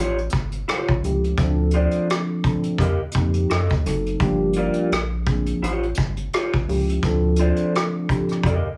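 A lightly swung 85 BPM groove in 4/4 drives this short, introspective neo-soul R&B excerpt. A vintage brush kit with a tight kick, rim clicks and hi-hat sits up front with a rolled-off top, over a rubbery, hollow square-wave bass with a dark, resonant bounce. A mellow, clean tine electric piano with phaser joins at 1.0 s to accompany chords such as A7b13, Dm7 and F#dim7, while an electric guitar through a small old amp carries a slightly broken-up, lo-fi second line treated with subtle chorus and plate reverb, all set in a soulful small-room ambience.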